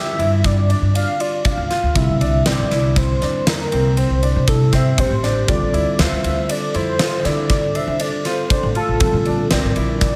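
Progressive instrumental band music in 7/4, brooding and driving, cut from a longer piece and moving through G7(no3), C7, Dm7 and Bbmaj7. A thick, dark, detuned sawtooth unison lead with a sub octave, moving notch and vibrato carries the melody over a clean tine electric piano in the background, clear grand piano arpeggios with delay, a woody pizzicato upright bass, and a huge up-front arena drum kit with a punchy kick, fat snare and ride cymbal. At 4.5 seconds a bright, ringing vibraphone with medium hard mallets adds a second line through delay in the background, and the mix sits in light reverb and studio ambience.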